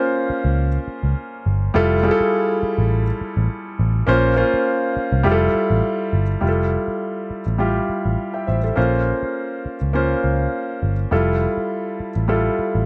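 Lightly reverberant studio sound frames this short cut from a romantic, smooth 1970s-style soul piece at 102 BPM in F major with a gentle sixteenth-note swing, where an intimate grand piano, its action noise audible, plays the accompaniment over Bbmadd9 and Fmaj9 chords while a dark, round, foam-muted picked electric bass sits up front beneath it from 0.3 seconds.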